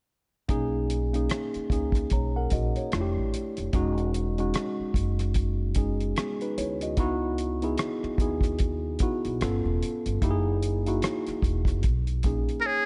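A worn, slightly out-of-tune tine electric piano, a woody, thumpy upright bass and a dark, cloth-damped drum kit with a tight kick, hi-hat and rim click all enter together at 0.5 s in this sensual, soulful neo-soul excerpt, moving through lush ninth chords over a swung groove. The small, lightly reverberant room keeps the piano and drums up front. At 12.6 s a buzzy, brilliant trumpet with a metal mute slips in with a soft attack and light vibrato as the drums play a brief fill.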